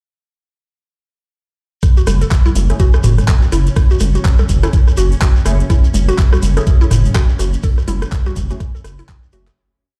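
A quirky, cool minimal techno piece that drops in at 1.8 seconds with an up-front, knocking four-on-the-floor electronic kick, metallic garage hats and claps, a very quiet gritty looped breakbeat, a booming analog drum machine's rim clicks and toms in cross rhythm with tape echo, and close, grainy shekere sixteenths. A rubbery, hollow square bass bounces on the off-beats under a woody, nasal mallet-like synth pluck whose 9-step loop drifts against the bar through chorus and dub echo, both pumping against the kick. Behind them sit muted, phased dub chord stabs with tape echo and a swarming, tense high drone, before a fade-out from 7.0 seconds.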